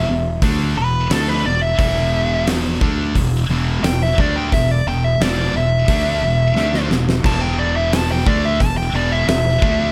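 Hard rock excerpt with a driving, aggressive mood: a nasal, overdriven lead guitar with a parked wah and slapback echo solos up front over the riffs of a bright, scooped high-gain guitar and a sludgy guitar sitting in the background, while a round, punchy fuzz bass thickens the low end and a huge arena drum kit with a fat snare and punchy kick comes in at 0.4 seconds and plays a fill at 6.6 seconds, all in a lightly reverberant space.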